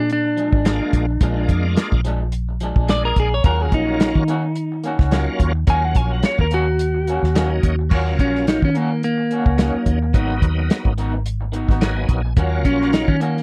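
Riding a straight-eighth groove at 108 BPM with a light sixteenth-note swing, this brooding, smoky soul blues in Eb minor moves through Bb7, Ebm7 and Abm7 chords across a short cut from a longer piece. A clean, twangy electric guitar carries a picked solo from the first moment, its bright tone bathed in spring reverb and sitting up front beside a round, punchy, foam-muted fingered bass. The dry acoustic drum kit, the loudest part, grounds everything with a tight kick, a medium-tuned snare, hi-hat and dark crash cymbals, its top end rolled off. A second guitar through a small old amp adds quieter, slightly broken-up stabs with tremolo, while a full, shouting tonewheel organ with key click, chorus vibrato and a slow rotary speaker fills in the accompaniment and steps forward with a brief fill at 11.5 seconds. The close, dry 1970s-style studio sound keeps the playing intimate and immediate.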